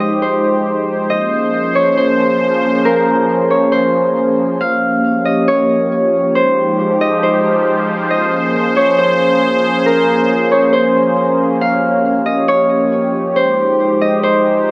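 Lightly reverberant small-room ambience frames this spacious, hazy half-time hip hop excerpt at 137 BPM, where an up-front, fingerpicked Celtic harp rings out a melody through a low-pass filter and digital delay over a detuned, chorused sawtooth pad whose slow-attack, evolving chords with a filter swell sustain throughout, cycling through Fm9, Bbm9 and Gm7b5.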